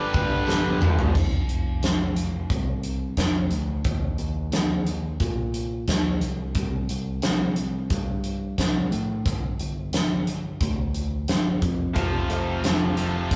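A rough rehearsal-room recording with warm saturation and moderate reverb carries this driving, swaggering classic rock cut at 89 BPM, which opens with a gritty overdriven harmonica solo full of scooped notes and tongue slaps over a faint, worn baby grand piano, a bright cranked stack guitar, a pair of tight distorted guitars, a dark, round overdriven picked bass, a jingly tambourine and a drum fill. From 1.1 s it rides on that bass and a huge arena kit with a fat snare and punchy kick up front until the piano, stack guitar and one distorted guitar return at 11.9 s.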